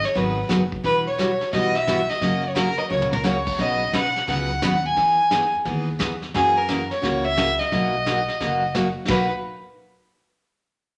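A clear, biting bowed fiddle with light vibrato carries the melody of this cheerful, down-home western swing excerpt, backed by a bright, full-bodied picked dreadnought acoustic guitar, a woody, thumpy gut-string upright bass played pizzicato, and a vintage brush kit with dark cymbals and a punchy kick that drops a short fill at 2.9 s, all set in a wet large studio reverb over a swinging progression that resolves to Bmaj7.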